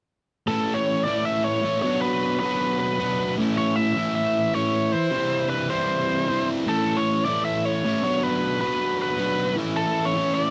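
A dry, close studio sound in a 1970s style frames this rock excerpt, with a modest booth ambience giving the guitars a tight, present edge. At 155 BPM in a straight 4/4, the mood is upbeat and jangly, set in A major and tuned to A4 = 441 Hz. A double-tracked, compressed fuzz guitar drives the riff up front from 0.5 to 10.5 seconds, its picked, distorted tone spanning A2 to F#4. Over it, a biting lead guitar carries the melody between A4 and E5, its bright, overdriven attack also placed up front. The harmony moves through A, Bm and C before returning to A, in a passage cut from a longer piece.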